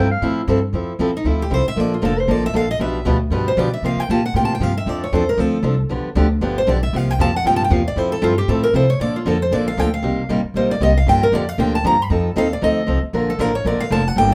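Heard in a moderate club reverb, this lively, swinging jazz manouche excerpt at 232 BPM pairs a bright, up-front steel-string guitar accompaniment, where finger squeak is audible, with a woody, thumpy pizzicato upright bass on gut strings, while a second, warm parlour-toned guitar with fresh strings carries the picked solo melody from 1.2 seconds, and the harmony moves from F major to Bb major at 9.0 seconds.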